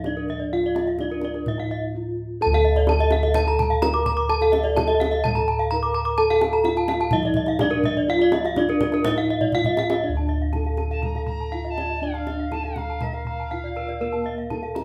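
Heard in a moderate large-room reverb with the ensemble playing live together, this hypnotic, brilliant excerpt of Balinese gamelan on uneven beats sets a dark, mellow bronze metallophone melody and round, airy bossed gongs in the bass beneath two bright, horn-mallet metallophones rippling arpeggios with shimmering paired-tuning beats, while a tight, compressed kendang plays with soft hands, a brief break falls at 1.7 s, a drum fill leads into a new section at 10.0 s, and a breathy, chiffy soprano recorder adds a second line from 10.9 s.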